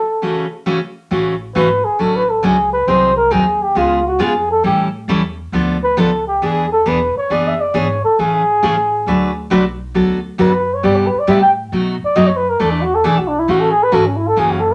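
Western swing country in A major at 136 BPM, this cheerful, down-home excerpt swings its eighths as a breathy flugelhorn with a dark, smooth-topped tone and vibrato sits up front, opening with a brief break before taking a jazz-style solo from 1.1 seconds. A picked steel-string acoustic guitar with fresh strings and a warm dreadnought body backs it, while a woody, thumpy pizzicato upright bass on gut strings enters at 1.1 seconds low in the mix. The chords wander through colourful turns like Dmaj7/A, G#7, Dm6 and Cmaj7 before settling back on A6, all set in a wet studio reverb.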